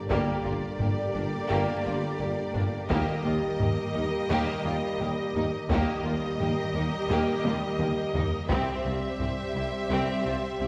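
A straight 4/4 pulse at 86 BPM drives this dark, dramatic cinematic orchestral excerpt, where a smooth, vibrato-rich violin melody and a focused second violin line ride over sustained chords from mellow French horns, trombones and a lush string section, with a soft-attack viola accompaniment, a bass of close-miked tuba, bowed double basses and a very quiet portamento cello section, and a band-limited, vintage-toned taiko ensemble struck with heavy sticks that plays a fill from 7.4 to 8.5 seconds and stops at 9.5 seconds, all set back in a wet scoring-stage reverb as the chords move from Gm to Eb to C.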